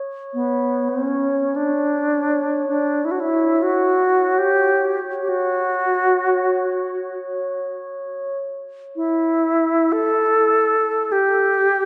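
Meditative and haunting, this short cut from a longer world meditation piece drifts in free time, tuned slightly low with A4 at 437 Hz. A glass harmonica opens at 0.0 seconds, holding a glassy, ethereal C#5 with a slow attack and an airy, smooth tone as a quiet texture until about 8.4 seconds. A bright alto flute enters almost at once to carry the melody between B3 and A4, sitting up front with a pure, tongued sound and vibrato. An analog delay trails the flute's phrases, and the flute continues on its own after the harmonica drops out, playing through to the close. A long plate reverb soaks the whole mix, leaving a dreamy, floating sense of space.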